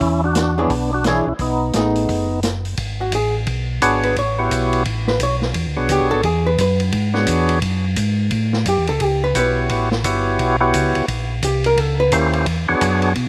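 A dry sound with little reverb frames this greasy, bluesy soul jazz organ trio excerpt in E mixolydian, swinging briskly at 173 BPM over chords such as E13, A13 and a passing A#dim7. Up front, a percussive tonewheel organ carries the melody with key click, second-harmonic percussion and a slow rotary speaker plus slapback echo, while a second, round and dark tonewheel organ holds down the bass through its own slow rotary speaker. A vintage acoustic drum kit with dark cymbals and a punchy kick sits lower in the mix, and a clean, picked hollow-body archtop guitar with slapback echo joins at 0.6 seconds and takes a solo from 2.8 seconds.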